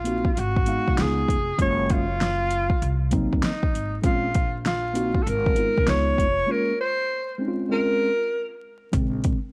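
Vinyl crackle and small-room ambience frame this smoky, mellow jazz-hop excerpt with a swung feel, where a breathy, whispered tenor saxophone carries the melody with subtone and scooped notes, a clean tine electric piano plays through its built-in speakers, a growly pizzicato upright bass sounds woody, and an up-front electronic drum kit hits with deep kick, fat snare and metallic hats before a break at 6.5 seconds.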